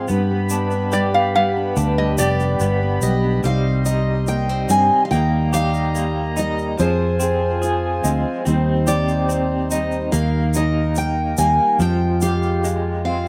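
A metallic, nasal resonator slide guitar stands out early, playing a brief high second line from 0.9 to 3.0 seconds that overlaps with a full-bodied picked acoustic guitar taking the melody from 2.2 seconds in this reflective, melancholic acoustic folk piece in C minor at 72 BPM. Beneath them, a woody fingerpicked acoustic guitar with old strings provides accompaniment, a reedy, breathing pedal harmonium holds sustained chords, and a slightly broken-up, lo-fi electric guitar plays arpeggios with tremolo and slapback echo. A round, punchy electric bass sits up front, a grainy egg shaker adds light percussion, and the dry outdoor recording carries the harmony from G into Cm, Eb, Fm and a closing Fmadd9.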